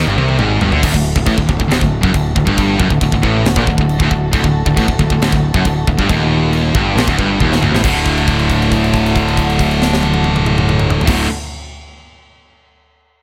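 Aggressive, heavy metal excerpt at 137 BPM in D major, where two picked distorted guitars, one sludgy and overdriven and one tight and up front, drive a low riff over a growly, punchy electric bass and a polished metal kit with high-tuned snare, china and crash cymbals in an airy big room, while a very quiet, distant string section holds dark, reedy bowed chords beneath, moving from a G5 to D after an opening drum fill, with another fill at 7.4 seconds leading into a held note from 7.8 seconds.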